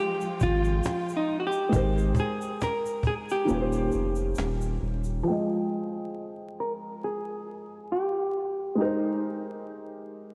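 A clean, hollow-body jazz guitar carries the melody up front in this mellow, nostalgic lo-fi hip hop excerpt at 68 BPM with a light swing, over soft felt-muted upright piano chords that continue throughout, joined by a thick saturated sub bass and a snappy cajon with a grainy tube shaker in the background, which drop out at 5.2 s, while lush bowed strings with vibrato fill only the opening 1.7 s and a filter sweep, vinyl crackle and a dreamy hall reverb color the jazzy Fm9, Abmaj9 and Eb13 harmony.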